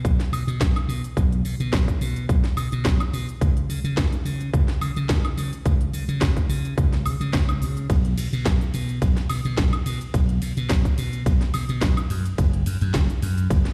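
Groovy and sensual, this nu-disco excerpt moves at 107 BPM in 4/4 with a light swing on the sixteenths, pairing a bright, amped slap bass and a punchy, up-front electronic kick drum with a layered house drum kit of cracking snare, crisp hi-hats, ride cymbal, shaker and woodblock, all sounding as if played on a big sound system in a bare room with large studio reverb.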